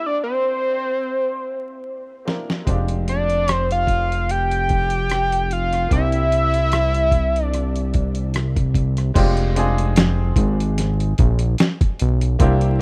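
Sultry and late-night, this neo-soul R&B fragment at 74 BPM in F dorian, with a lightly swung 16th feel, opens on a brilliant baby grand piano and a fat, detuned sawtooth-and-square analog lead with a sub octave, vibrato and phaser carrying the melody until 8.3 s, while a gritty, compressed sampler-style drum kit with a thumpy kick arrives at 2.3 s and a thick analog bass with a filter sweep joins at 2.7 s, moving between C9 and Fm69 chords in a dry, rough home-demo mix dusted with vinyl crackle.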